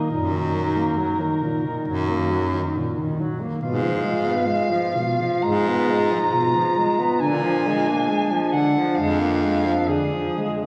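Classical and lyrical, this melancholic, solemn excerpt for single-reed quartet moves in a rubato 4/4 at 58-72 BPM in Eb minor, with a mellow, vibrato-laden soprano saxophone carrying the melody up front over a clear clarinet second line, a distant, roomy tenor saxophone accompaniment and a bright baritone saxophone bass, all bathed in wet church reverb as the harmony passes from Ebm/Gb through Fdim/Ab to Bb7 at 7.2 seconds.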